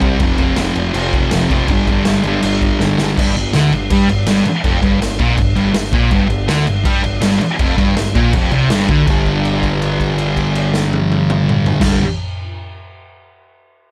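A straight 4/4 beat drives this swaggering, rowdy garage rock clip at 162 BPM, cut from a longer piece and tuned slightly sharp to A4 = 443 Hz. A raw acoustic drum kit sits up front in a small, pumping room, with a boomy kick, a medium-tuned snare, toms and dark crash cymbals, all saturated and gritty with a rolled-off top; a drum fill at 2.8 seconds pushes the music into its next section. The thick fuzz guitar carries the riff over F5 and G5 chords, double-tracked, picked and up front, spanning F2 to C4. Underneath, a growling picked electric bass, overdriven and mixed in the background, holds the low end from F1 to G2. The final section opens at 9.1 seconds with a held note ringing almost to the end, and light reverb adds a touch of air to the rough, loud mix.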